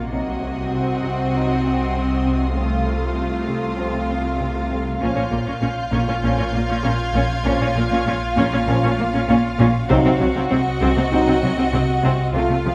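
This cinematic suspense cue, cut from a longer piece, moves at 98 BPM in 4/4 with a straight feel in Bb minor, its mood mysterious and tense. A warm, lush violin section carries the melody between Eb5 and F5, set fairly low in the mix, while a second, rich violin section holds a line between F4 and Gb4, with violas filling in the accompaniment beneath. Cellos and double basses anchor the bass in the background, joined by a second cello section playing a riff from Bb2 to C4 and a deep, rumbling, ominous drone with its own built-in reverb and a slow attack. Mellow French horns add sustained chords with light vibrato, and a high violin texture between C6 and Ab6 enters with a soft attack and a smooth top, dropping out at 9.6 seconds. The harmony moves from Cdim through F/C to Bbm and back to Cdim, all bathed in the generous reverb of a scoring stage.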